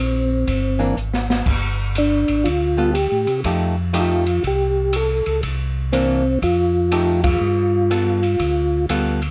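Lightly reverberant and up front, this swinging, bluesy soul jazz organ trio clip sets a soft, flute-like percussive tonewheel organ melody with chorus vibrato and slow rotary speaker over a round, lightly overdriven organ bass, while an open acoustic drum kit with dark cymbals, a high-tuned snare and boomy kick plays a fill at 1.0 seconds, a clean, picked hollow-body archtop guitar adds accompaniment from 0.8 seconds, and the band hits an accent at 7.2 seconds.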